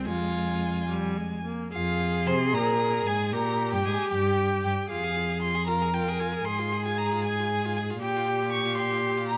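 A rich, vibrato-laden violin sings a melody high above a focused, close viola accompaniment and a smooth, bowed cello bass from the opening instant of this restless, dramatic fragment of a quick classical-period string quartet movement in F minor and 6/8 at 76 BPM in dotted quarters, played with rubato. A clear, even second violin joins at 0.1 s with its own inner line, and moderate recital hall reverb frames the harmony as it shifts from F minor through G minor and back toward a closing Bbsus2 at 8.0 s.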